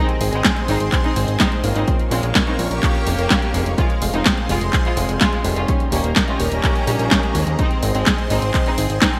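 Bright 1980s-style digital production with light reverb frames this bittersweet, danceable italo disco excerpt at 126 BPM, where a rich, distant violin section carries the melody with vibrato and delay over a lush, detuned unison pad with chorus and phaser, warm concert grand piano stabs in the background, a fat, nasal analog bass, a punchy electronic kick entering at 0.4 seconds, and an up-front house kit of handclaps, hi-hat and gated-reverb snare, all moving through Ab, Bbm, Fm and Eb.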